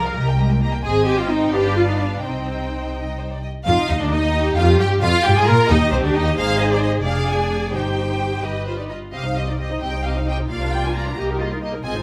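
A quick classical-period movement for string orchestra in C minor, this passage cut from a longer piece has a restless, stormy mood, moving at 88 BPM in a rubato 6/8. The first violins carry the melody with a warm, expressive tone and soft attack, while a distant second violin section adds a rich, even second line above the viola section's smooth accompaniment. Underneath, the dark cellos and woody, up-front double basses share the bass, their bowed vibrato giving the low end a lush weight. All five sections play throughout the 12 seconds, shifting from an opening section into a new one at 3.7 seconds, where the harmony turns through Ebmaj9/D and a diminished chord before passing back through C minor. A moderate stone-room reverb gives the ensemble a resonant, enclosed space.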